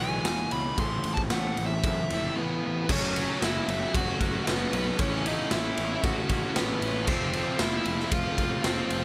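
Quiet-loud alternative rock at 114 BPM in a brooding, angsty mood, this excerpt from a longer piece opens with a fuzz lead guitar soloing over twangy tremolo arpeggios from an electric guitar through a small old amp, which stop at 2.9 s, while a crunchy overdriven guitar and a bright, scooped high-gain guitar churn riffs in the background, a growly fuzz bass digs in below, and a saturated, gritty garage drum kit with a boomy kick sits up front in a pumping stone room from 0.2 s, all moving from E and Am to F#m, A and F under light reverb.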